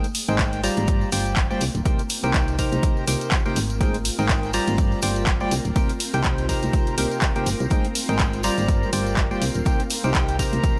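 An energetic, soulful piano house groove opens with a hollow, percussive organ stab up front, carrying chorus, sidechain pumping and dub echo, alongside an overdriven analog drum machine of handclaps and hi-hat and ringing, close congas and tambourine in the background. A round FM bass and a punchy, overdriven kick arrive within the first half second, and at 1.7 s an ethereal, detuned pad with ensemble chorus, phaser and reverb drifts in behind. The harmony cycles through Abmaj9, G7sus4 and Cm7 with a gentle swing, in a short cut from a longer piece.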